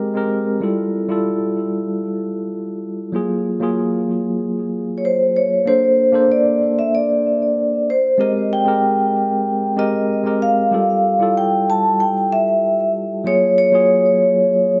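Sunny and relaxed, this chillout excerpt opens with a clean tine electric piano, heard through its built-in speakers, laying down lush major-ninth chords with a digital delay. At 5.0 s a vibraphone with medium mallets enters up front to carry the melody, its metallic, ringing tone shimmering with fast motor vibrato and a boxy small-room character, also touched by digital delay. A moderate hall reverb surrounds the dark, warm production.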